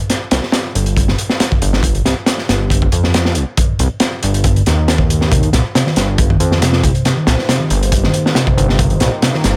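A crunchy breakbeat drum kit opens this funky, raw breakbeat excerpt, its punchy kick, high-tuned snare and hi-hat sitting up front in a small room with a saturated, gritty character and a rolled-off top. A fat analog bass joins almost at once, its detuned sawtooth tone thick with tube saturation and shaped by a fast filter pluck, holding a low register over a steady Cm7 harmony in straight 4/4. At 5.3 seconds a hollow-body short-scale picked electric bass enters with a round, amped riff higher up, roughened by overdrive and vintage 12-bit sampler grit. From 6.9 seconds a deep, moody ambient pad rises slowly in the background, its evolving unison saw and sine layers with a sub octave softened by chorus and built-in reverb and pulsing with sidechain pumping. The result is a dense, low-heavy groove where the gritty drums and basses dominate and the mellow pad adds shadowy depth.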